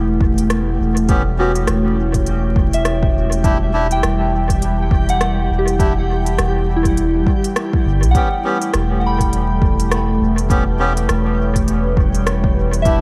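Swung sixteenths at 102 BPM carry this hazy, deep ambient dub fragment, where an overdriven electronic kick thuds in at 0.2 seconds and smooth hi-hat and rim click with dub echo follow at 0.4, a round, up-front sub bass sits beneath a dark, warbling chorused pad moving between A9/E and Em, a pure FM bell spins echoing arpeggios, a reversed granular texture swells dreamily, and a reedy, breathy melodica drops echoed stabs from 1.1 seconds, all over a veil of vinyl crackle and light digital ambience.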